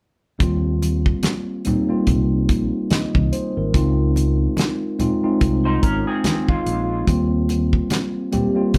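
A slow 72 BPM groove with a swung sixteenth-note feel drives this lush, smooth 1970s-style soul excerpt in Eb major, where a mellow, clean tine electric piano and a round, dark fingered bass move from Eb69 to Dbmaj9 and back over a dry, tight 70s drum kit with rolled-off top and low-tuned congas played with soft hands in the background, while a slightly broken-up, lo-fi electric guitar through a small old amp slips in a picked riff with harmonic tremolo from 5.7 to 7.1 seconds, all in a live room with moderate studio reverb.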